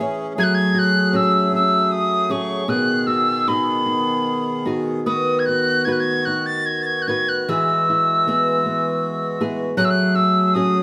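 The recording has the open feel of a band playing live together in a large studio, with a moderate reverb that gives the room a gentle bloom. This short, nostalgic and wistful passage from a longer Celtic slow air moves in three with uneven, rubato beats. A fingerpicked acoustic flamenco guitar sits up front as accompaniment, warm in tone, while a close-miked accordion holds reedy, full, dry sustained chords with a slow beating in its tone. The metal tin whistle enters at 0.4 seconds to carry the melody high above them, its sound pure and mellow, with vibrato, tongued notes and a chiff. It comes across as both up front and distant at once, and its playing is deeply expressive. The harmony drifts from F#madd9 through B6, B and Eadd9 before returning to F#madd9 near 9.8 seconds, and the passage ends at 10.8 seconds.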